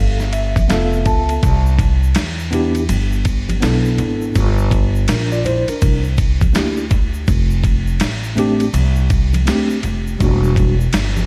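A swung groove opens this cool, mellow jazz-hop excerpt, driven by a gritty, overdriven sampler-style drum kit up front with a thumpy kick, medium-tuned snare, hi-hat and ride, alongside a woody, dark pizzicato upright bass on gut strings. A clean, mellow tine electric piano heard through its built-in speakers starts with a short fill over the first 1.4 seconds, then comps through lush extended chords such as Cmaj9, C9 and F6 before ending on Em7b5. A bright, saturated tube shaker and soft-handed congas sit in the background, all wrapped in light digital ambience and a layer of vinyl crackle.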